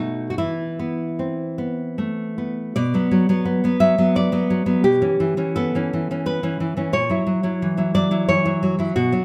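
A nylon-string guitar carries this romantic solo piece alone, its fingerpicked tone full-bodied and deep, sitting up front with finger squeak audible along the strings. The mood is melancholic and intimate, in B minor and 3/4, with a rubato feel that lets the tempo drift between 72 and 92 BPM. The guitar ranges from A#2 up to E5, touching that high E5 at 0.4 seconds in the opening phrase. A new section begins at 2.8 seconds on a B minor chord, moving through C#m7b5/B and settling on F#7, voiced with its third omitted, at 6.9 seconds. A moderate recital hall reverb gives the instrument a natural bloom around it, and this brief passage, just over nine seconds, is cut from a longer piece.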